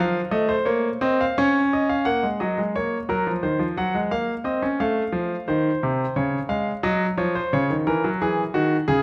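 A brilliant, intimate grand piano sits up front with audible action noise and long sustain, playing a solemn, contemplative baroque-style two-part invention alone at 88 BPM in 4/4, moving through chords such as F7, Bbm and Dbmaj9 inside a lingering recital-hall reverb in this brief cut from a longer piece.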